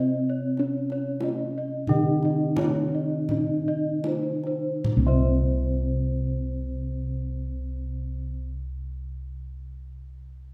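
Round, beating bronze bossed gongs sit up front in this stately, shimmering Javanese gamelan passage cut from a longer piece, where three bronze metallophones carry the melody, accompaniment and ringing arpeggios with mellow padded-mallet tones, paired-tuning shimmer and one dark, smooth horn-mallet voice, while a tight, distant kendang plays from 0.6 to 5.6 s, the music slows through the first 4.9 s, and a recital-hall reverb envelops the ensemble.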